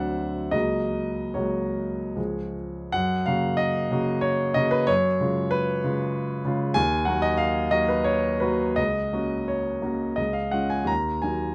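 Close, detailed microphones and light reverb put a baby grand piano up front, its tone warm, present and polished, with long sustain letting each chord ring. This is a romantic character piece for solo piano in F# major, passionate and lyrical, moving in 3/4 at a flexible tempo between 71 and 100 BPM with a free, rubato feel. The piano carries everything alone across the 11.5 seconds, ranging from C#2 up to A#5, tuned slightly below standard pitch at A4 = 439 Hz. An opening passage gives way at 2.9 seconds to a new section, where the harmony turns through F#, C#7 over F# and D# minor before settling back toward C# and D# minor. The fragment is cut from a longer piece.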